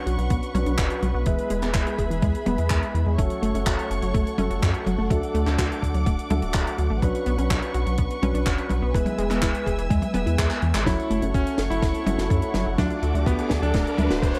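Sustained, bowed strings with gentle vibrato and gritty, tape-echoed grand piano stabs open this bittersweet, danceable italo disco excerpt in F# minor at 125 BPM. They are soon joined by a lush, detuned unison pluck arpeggio under a filter sweep, a round, deep analog bass up front, a tight funk kit with handclaps, hi-hat, a high-tuned snare and toms, and an overdriven, thumpy electronic kick. A drum fill at 10.5 seconds then leads into a bright, cutting electric grand piano melody at 10.9 seconds and a background riser at 11.7 seconds.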